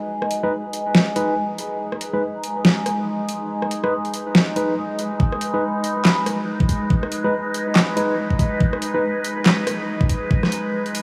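Cavernous and meditative, this deep dubstep build-up at 141 BPM in G# minor rides a half-time, swung feel as a resonant sawtooth-and-sine drone with moving overtones holds a G# minor chord under chorus and phaser, a barky tine electric piano adds clean, filtered stabs with dub echo, an overdriven dubstep kit brings a deep snare, bright hats, handclaps and rim clicks, and a knocking electronic kick enters at 5.2 seconds, all inside a huge ambient reverb.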